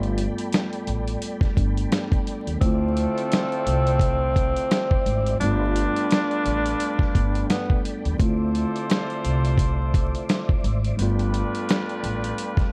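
A gritty boom-bap hip-hop excerpt opens on a compressed, sampler-style drum kit with a thumpy kick, set up front beside a woody, growly pizzicato upright bass. Beneath them, a worn, slightly out-of-tune tine electric piano with cassette-tape colour plays accompaniment over G9 and Dm9 chords, while a smooth tonewheel organ with key click and slow rotary speaker holds chords in the background. At 2.6 seconds a tenor saxophone takes an up-front jazz solo with vibrato and scooped notes until 7.8 seconds, as a tight trumpet section adds stabs with slapback echo, all in a small room with vinyl crackle and a dark, swung feel.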